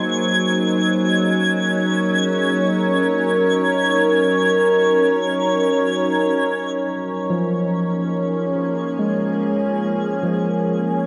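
Ambient music in free time and D-flat major, weightless and warm, cut from a longer piece and bathed in a huge reverb wash. An evolving, detuned wavetable pad sits up front with chorused sustained chords, moving from Gb6 to Db6 at 6.8 seconds, while a twinkling granular texture adds a high, sparkling octave-up shimmer throughout. At 7.3 seconds a bright, barky tine electric piano enters with clean, delayed arpeggios in its low register.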